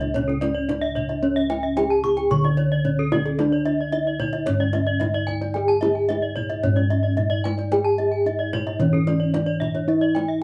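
A straight 4/4 pulse at 111 BPM drives this brilliant, ceremonial Balinese gamelan passage in C# pelog, where a mellow bronze metallophone struck with padded disc mallets carries the melody over round, up-front bossed gongs in the bass and deep, band-limited kendang, while two more metallophones spin arpeggios, one dry and close-miked under a wooden mallet and the other bright and airy under a horn mallet from 0.3 s, with the paired tuning of the three metallophones yielding shimmering beats inside a moderate studio reverb.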